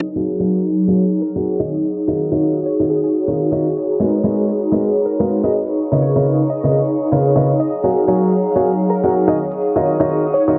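This euphoric, feel-good piano house excerpt opens with an airy, breathy pad up front, coloured by chorus. Alongside it is a punchy, catchy sawtooth lead in detuned unison, treated with subtle chorus and dub echo. A bright baby grand piano enters at 0.2 seconds with a brilliant, up-front riff of short-sustained notes, matching the pad in level. Behind them, a distant studio string section holds bowed chords with light vibrato and an earthy tone, while a very quiet electronic house kit adds crash cymbal and warm hi-hats with a swung sixteenth feel. The harmony moves from D#m9 to G#m9 and C#13 before returning to D#m9 at 7.7 seconds, with a filter sweep running through the whole passage, a lush hall reverb, and a dense, heavily limited, low-pass-filtered master.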